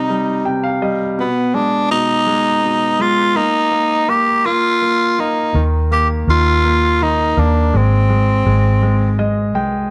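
In a slow, straight 6/8 at 55 BPM counted in dotted quarters, this heartfelt, tender pop ballad fragment opens with a raspy, gritty tenor saxophone singing the close-miked lead with vibrato over a clear, polished concert grand piano that plays fills at 0.1 and 8.8 seconds. A dark, foam-muted fingered electric bass with a round, punchy tone enters at 5.5 seconds as the harmony moves from C minor through A-flat minor over C-flat and a chordless passage to an E-flat power chord and A-flat, all set in light reverb and small room ambience.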